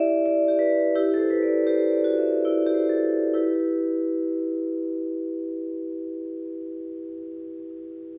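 Reflective and hypnotic, this short passage from a longer contemporary classical work features a single vibraphone played alone with medium mallets. The metallic bars ring with the motor off, so each note sounds steady and pure, with a boxy, close character that places the instrument up front. The piece moves in a flexible three-beat metre, slowing through its opening phrase before a new passage begins at 3.3 seconds. The vibraphone stays within a single octave, moving from an Em7 colour through a Cadd9/E shading before settling on a plain Em chord. A wet recital hall reverb surrounds the sound, so the listener seems to be sitting further back in the room as the notes bloom and fade.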